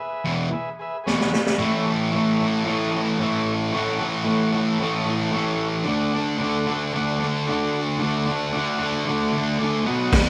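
Recorded live in one room with a moderate large studio reverb, this raw, rowdy garage rock piece at 113 BPM opens on a break in E, where a buzzy, clean vintage combo organ holds sustained chords soaked in spring reverb and, from 0.2 s, a bright, double-tracked fuzz guitar riff sits up front. A punchy vintage drum kit with a high-tuned snare and dark cymbals plays a short fill at 1.1 s, and then the riff moves through A and D over the organ. The kit returns with a very quiet, growling, overdriven picked bass only at 10.1 s, just as the cut from the longer piece ends.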